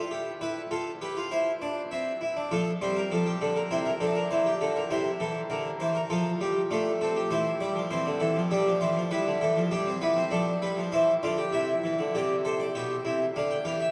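A brilliant Flemish-style harpsichord with three sets of strings sits up front in this elegant, lively baroque-style three-part fugue, its airy, plucked tone spanning B2 to G5 at a straight 100 BPM in 4/4. Heavy cathedral reverb, with a decay of 4.8 seconds, sets the solo instrument in a vast, echoing space. The harmony moves through G7, C, F and G7 back to C before a new section begins at 12.2 seconds and turns toward D minor, where this cut from a longer piece ends.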